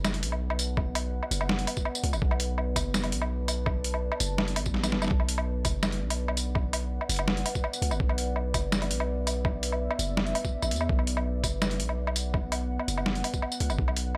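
Dry and up front, this cinematic, heavy half-time drum and bass excerpt sets a gritty, overdriven, pitched-down sampler-style kit of high-tuned snare, hi-hat, tambourine and woodblock, with a thumpy electronic kick entering at 0.8 seconds and a brief drum fill at 4.7 seconds, over a deep, sine-toned 808-style bass with tube saturation and a moody, wave-folded ambient pad holding sustained chords under chorus, built-in reverb and sidechain pumping.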